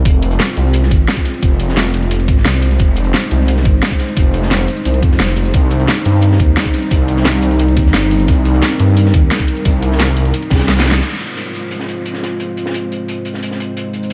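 A moody, nasal analog pad with sidechain pumping and a thick, detuned saw bass with chorus and tube saturation open this futuristic, dark technical drum and bass cut at 175 BPM in F minor, moving between Fm and Cm. A knocking electronic kick sits up front beside a dubstep kit with a huge snare, metallic hats and crash, while a gritty, filtered breakbeat kit with a high-tuned snare and rolled-off top sits in the background under light studio reverb. A drum fill at 10.7 seconds and a band accent lead into a sparser passage at 11.0 seconds, where the pad and the breakbeat kit carry on together until 14.1 seconds.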